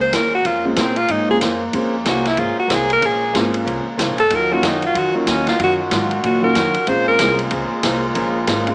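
Heard through a small speaker in a moderately reverberant large studio, this brassy, sultry big band swing excerpt in Bb minor moves at 187 BPM, with chords shifting between Bbm9 and Ebm9. An edgy, forceful alto saxophone takes the solo up front, bathed in plate reverb, with vibrato and scooped notes, until it stops at 7.4 s. Behind it, a brilliant, tight trombone section holds sustained chords, a boxy picked acoustic guitar with finger squeak sits in the background, a woody pizzicato upright bass anchors the low end, a vintage drum kit with dark cymbals and a punchy kick enters at 0.1 s, and a grand piano joins at 0.6 s.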